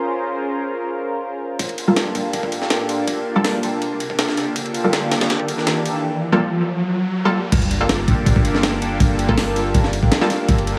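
A lush, detuned unison pad of sawtooth and square waves opens this nostalgic, raw drum and bass excerpt in G minor at 162 BPM, sitting up front with chorus and phaser as a filter sweep moves across its sustained Bbm9 chord. At 1.6 seconds a gritty, compressed breakbeat kit arrives with a thumpy kick, a high-tuned snare, hi-hat, ride and crash, all high-pass filtered. The harmony settles on Gm9, and moments later a bold, punchy orchestra-hit-style stab joins, its layered sawtooth body and noise layer shaped by a filter pluck, short decay, built-in reverb and dub echo, with its own filter sweep during the build-up. An electronic riser and sub drop enters at 4.1 seconds and leads to the drop at 7.5 seconds, where an impact lands and a deep, dark 808-style sine bass holds a long, decaying G1. A moderate plate reverb gives the mix a sense of space, and the clip ends mid-flow as part of a longer jungle piece.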